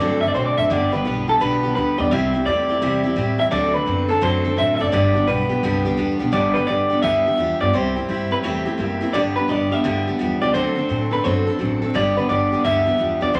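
Swung eighth notes drive this upbeat, retro rock excerpt at 171 BPM in 4/4 and G major, with the harmony moving through G, C and D7 and a second section arriving at 6.3 s. Up front, a twangy, slightly broken-up electric guitar through a small old amp carries a lo-fi melody over a full-bodied dreadnought acoustic with fresh strings and audible finger squeak. A second electric guitar plays a picked riff in the background, a woody, thumpy pizzicato upright bass on gut strings anchors the low end, and a large studio reverb and vinyl crackle lend the recording a vintage air.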